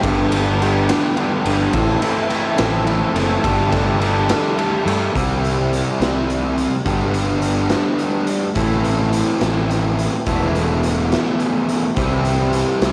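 A gritty, up-front garage drum kit with a punchy kick anchors this jangly, upbeat indie rock excerpt in 6/8 at 70 BPM in C major, alongside two bright, picked fuzz guitar riffs, one forward and one in the background with analog chorus, over an overdriven fingered bass, all cut to cassette in a small room as chords move from G through Am and Esus4 to C.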